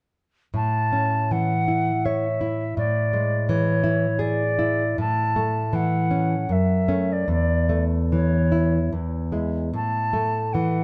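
Lyrical and warm, this romantic duo for flute and classical guitar, cut from a longer piece, moves in a rubato 3/4 between 71 and 86 BPM in A major (tuned to A4 = 441 Hz): the dark, full-bodied fingerpicked nylon-string guitar enters at 0.5 seconds with accompaniment moving from A through E7/A, F#m and E to a closing A5, while the silver concert flute joins at 0.6 seconds with an expressive, straight-toned melody of pure, crisp-edged metal, both captured by close, detailed microphones in a light reverb until 10.8 seconds.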